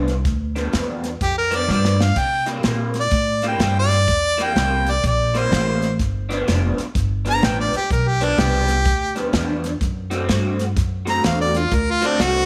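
A lightly reverberant studio sound puts a warm, close-miked harmonica and a woody, growly upright bass up front in this swaggering, soulful electric blues shuffle at 126 BPM, a short excerpt cut from a longer piece. The harmonica enters at 1.2 seconds for a jazz-style solo with light vibrato and scooped notes, while a bright, twangy, slightly broken-up electric guitar riff, colored by phaser, plays alongside the pizzicato bass. An airy, polished acoustic drum kit with a punchy kick and crash, hi-hat and snare adds a fill at 1.7 seconds as the chords move from G7 to C7, back to G7 and on to D7.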